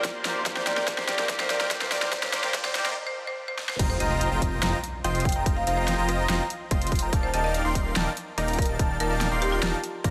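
A half-time future bass groove at 144 BPM in 4/4, bright and lush, opens with a build-up where an overdriven big-room dance kit with crash, hi-hat, rim click and a huge snare fills alongside a hard-clipped electronic kick, while a woody marimba melody and a dense, compressed supersaw riff pump against the beat, backed by a twangy, chorused electric guitar, distant sul tasto strings and a very quiet riser. After a brief break at 3.0 seconds, the drop lands at 3.8 seconds with an impact, bringing in a thick, detuned saw bass and an airy, dreamy lead playing high arpeggios, both pumping with chorus, as the harmony moves from Cm7 to F9sus4 and then Ebmaj9#11 at 7.1 seconds.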